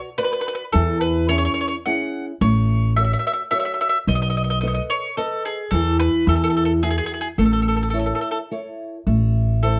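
Italian folk serenade in a lilting triple metre, wistful and romantic, heard as a short fragment of a longer piece. A small, warm fingerpicked nylon-string guitar opens the accompaniment. The bright, double-strung bowl-back mandolin carries the melody up front from 0.2 seconds, and a woody pizzicato upright bass sits just as close from 0.7 seconds. The production is dark with light reverb, and the chords wander through sixths, sevenths and an added ninth before a turn to A minor at 9.1 seconds.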